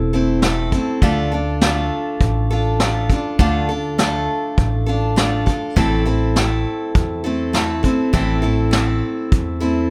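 Dusty and brooding, this short honky-tonk and classic country cut moves at 101 BPM in A minor, with a bright, full-bodied picked steel-string acoustic guitar up front showing finger squeak, a woody, thumpy gut-string upright bass plucked low and dark, and a vintage brush drum kit with a high-tuned snare, tight kick, hi-hat and rolled-off top sounding roomy in a small space, all shifting from Am to Dm and back to Am at 5.8 seconds in a dry mix.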